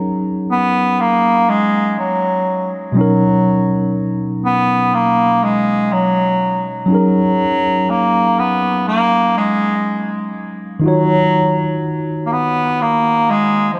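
A slow 61 BPM swung 4/4 pulse carries this moody, late-night R&B excerpt, where a worn, slightly out-of-tune tine electric piano lays down Gb69, Bmaj7 and Ebm7 chords beneath a clear, roomy solo bass clarinet that enters at 0.5 s with a classical-style melody trailed by diffuse ambient delay, all bathed in a dreamy, reverb-soaked plate ambience.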